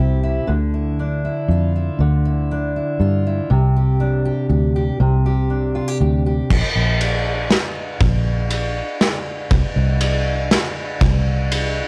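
Recorded at home on cassette with light reverb and a small-room ambience, this uplifting, nostalgic indie folk passage at 120 BPM in 3/4 opens with a full-bodied, fingerpicked dreadnought acoustic guitar, its tape-tinged tone up front, moving from Dmadd9 to Csus2 over a round, foam-muted fingered electric bass. At 6.5 seconds the guitar stops and the harmony drops away as a loose acoustic drum kit, also carrying a cassette grain, enters with a tight kick, medium-tuned snare, ride and crash in a pumping room sound. The bass carries on beneath the drums to 11.8 seconds as the arrangement builds.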